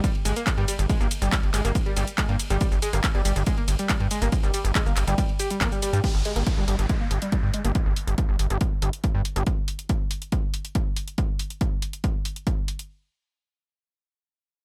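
A screaming, guitar-like overdriven synth lead with distortion, chorus, sidechain pumping and digital delay drives a riff from the drop at the start until 7.7 seconds, carrying a filter sweep from 6.0 seconds, over a punchy, up-front electronic kick, a techno kit of handclaps, warm hats, ride cymbal and shaker, a gritty, wave-folded, pumping synth bass that enters at 0.3 seconds, and a downlifter, in this intense, dark peak-time techno excerpt at 140 BPM in G phrygian with a dry, tight sound.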